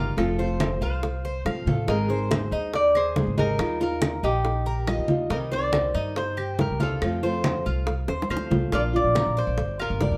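Danceable Cuban son and guajira in a dark, warm mix with a faint mains hum, where a nasal, metallic slide lap resonator guitar carries the melody over fingerpicked flamenco guitar chords, picked double-string tres arpeggios, and a thumpy, up-front gut-string upright bass, while low-tuned, thick-skinned congas, tight high bongos and woody, saturated claves in the background drive the groove into a drum fill at 8.1 s before the harmony shifts at 8.7 s in this fragment of a longer piece.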